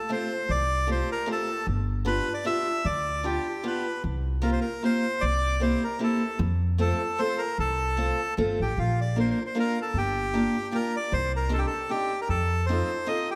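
A reedy, bright bandoneon opens this short excerpt from a charming, whirling musette waltz, carrying the melody up front at 152 BPM in 3/4 with a light swing on the eighth notes. A picked acoustic archtop guitar joins almost at once with a warm, boxy accompaniment on fresh strings. The upright bass enters at 0.5 seconds, plucked on gut strings with a woody, thumpy tone that sits close and dark beneath the other two. The first section moves through F major, touching G7 and a suspended C7 before settling back home. At 8.8 seconds the harmony shifts to Bb major, wandering through Gm7 and a minor C chord toward F7. A moderate concert hall reverb gives the trio a spacious, airy setting.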